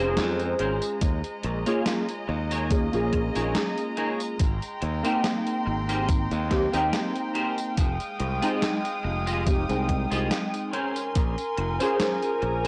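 Nostalgic and dreamy, this vaporwave excerpt drifts along at 71 BPM in Ab major with a light swing on the sixteenths, tuned slightly flat of standard pitch. Warbly, detuned lo-fi synth keys carry the accompaniment up front, softened by ensemble chorus and tape echo, while a studio string section holds sustained chords with a reedy, gut-string tone and light vibrato. A clean, picked semi-hollow electric guitar plays a riff through the same chorus and echo, and a bright, growly fingered electric bass sits up front with tube saturation. A gated 80s drum machine supplies hi-hat, tambourine and a gated-reverb snare with 12-bit sampler grit from 0.2 s, joined by a thumpy electronic kick from 1.0 s to 11.3 s. The chords move from Bbm9 through Eb7sus4, Abmaj9 and Fm9 before returning to Bbm9, and the dry, gritty cassette recording gives the whole passage a worn, tape-bound feel.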